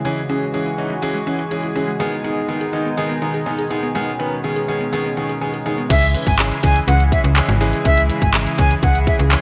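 A clear, smooth grand piano and a shimmering, retro pulse-width pad open this driving, confident dance-pop cut in C# minor at 123 BPM, both pumping against the sidechain, while a woody, mallet-like synth pluck traces mellow, tape-echoed arpeggios in the background over C#m and G#m chords. At 5.9 seconds the drop arrives: a punchy, up-front pop kit with handclaps, hi-hat and crash enters together with a snappy, metallic FM slap bass. Above them, an airy, reedy concert flute carries the melody with vibrato and tape echo, all set in a moderate plate reverb.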